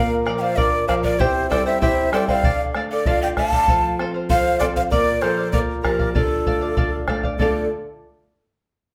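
A breathy cane quena carries the melody up front, its soft attack, vibrato and lifted highs giving this earthy, melancholic Andean folk piece its voice. Beneath it, large pan pipes play a second line with a mellow, hollow tone, a crisp chiff at the start of each note and their own vibrato. A bright charango shimmers with fingerpicked double strings, some doubled at the octave, while a warm flamenco guitar fingerpicks lower down, its finger squeaks audible. A deep, dark bombo enters at 0.3 s, sounding close, dry and up front. In D minor at 97 BPM in a straight 2/4, this short cut from a longer piece moves through Bb, C, D minor and F. It captures an ensemble playing live in one room, bathed in a wet, large studio reverb.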